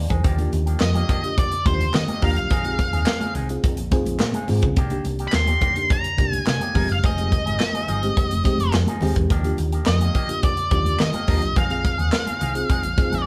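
An up-front octave-fuzz lead guitar with distortion carries the melody from 0.8 s in this slick, funky early-eighties boogie funk excerpt at 106 BPM, over an acoustic studio drum kit with a punchy kick, snare, hi-hat and handclaps, a dark, round hollow-body fingered bass, a tremolo FM electric piano supplying accompaniment through chords such as Ebmaj9, Bb9sus4, Cm9 and Fm7, a bright, twangy envelope-filtered guitar riff, and very quiet, close, dry congas, all captured as a band playing live in one room with moderate studio reverb.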